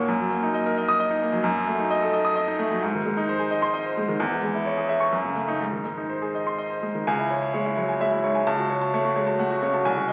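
In a rubato 3/4 at 130 BPM, this stormy, agitated passage from a virtuoso classical piano study in C# minor, tuned to A4 = 442 Hz, moves through diminished and half-diminished harmonies that keep returning to G# before a new section opens on C#m at 7.1 seconds. A solo baby grand carries the whole 10.1 seconds from B#1 up to Eb6, sounding clear, intimate and up front, with long sustain and audible action noise. The piano sits in a wet recital hall reverb, heard through the crackle of a very old 78 rpm record, and the passage is cut from a longer piece.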